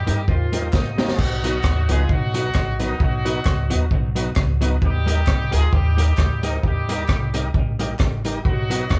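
The crunchy breakbeat drum kit stands out most, sitting up front with a punchy kick, a high-tuned snare, rim clicks and dark cymbals, its sound dark and smooth with a rolled-off top. This joyful, upbeat ska cut from a longer piece moves at 132 BPM in 4/4 with a light swing on the eighths. A clear horn section carries the melody in octave doubling with light vibrato and a vintage pop flavour, while a woody, thumpy upright bass on gut strings is plucked beneath it. A clean, compressed hollow-body jazz guitar adds accompaniment through a dub echo, and a thick, lightly overdriven tonewheel organ punches in stabs from the background, turning on a slow rotary speaker. A drum fill at 0.7 s brings in crisp group handclaps low in the mix, and the harmony moves between Eb and B, shifting to B at 1.2 s and back to Eb at 4.8 s. The band plays live together in one room with moderate studio reverb.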